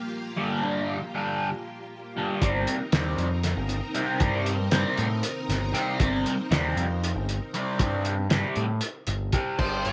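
A bright, double-tracked fuzz guitar riff with phaser drives this trippy, hypnotic psychedelic rock excerpt in 7/8 at 234 BPM, over lush, phased and chorused string-machine chords shifting from Gm7 to Cm7/G, joined at 2.4 seconds by a growling overdriven bass and a muffled, cloth-damped lo-fi drum kit with a fat snare and dark cymbals, before a dark octave-fuzz lead guitar slips in at 9.6 seconds, all set in a light studio reverb.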